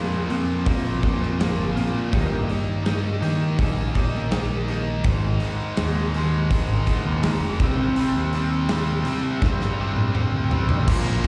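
Dark and angsty, this short cut from a longer quiet-loud alternative rock piece moves at 82 BPM in C minor, heard as a live gig through the venue's PA with recital hall reverb. A lo-fi, slightly broken-up guitar through a small old amp plays arpeggios with ensemble chorus and slapback echo in the background until 5.0 s, while an up-front, double-tracked overdriven guitar drives a riff over a growling, overdriven picked bass as the chords move from Bbsus2 through Eb and Ab5 to Cm. A big acoustic rock kit with a punchy kick and bright cymbals enters at 0.3 s and closes with a drum fill from 9.4 to 10.9 s.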